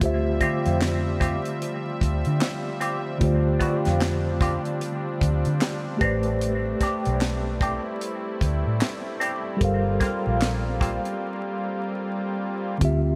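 R&B with a neo-soul lean, this introspective, soulful excerpt sits at a relaxed 75 BPM in D minor, swinging gently on the sixteenths as a mellow tine electric piano, a dark, round, foam-muted fingered bass and a tight, dry funk kit with a punchy kick, high-tuned snare, hi-hat and handclaps carry it from the start over chords moving from Dm11 to Am11 at 6.0 s and Gm11 at 9.6 s. A shimmering pipe organ on soft string-celeste stops holds chords beneath, while a slightly broken-up, lo-fi electric guitar through a small old amp adds a second line with wah, tremolo and delay from 0.4 s to 11.0 s, just before a break at 11.2 s. The bright 1980s-style digital production sits in a lush hall reverb, with a touch of vinyl crackle.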